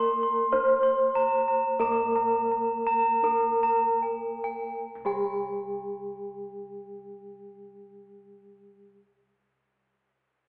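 Heard through a narrow, telephone-like filter and bathed in a concert hall's long, wet reverb, this short fragment of ceremonial, shimmering Javanese gamelan moves at a slow 35-52 BPM in 4/4, slowing down over the first 4.8 seconds before a new section begins. Up front, a bronze metallophone carries the melody with wooden mallets and paired tuning that produces beating shimmer, while a higher metallophone struck with horn mallets rings out bright arpeggios. Beneath them, a lower airy metallophone adds accompaniment, and round, dark bossed gongs played with padded beaters hold the bass softly in the background.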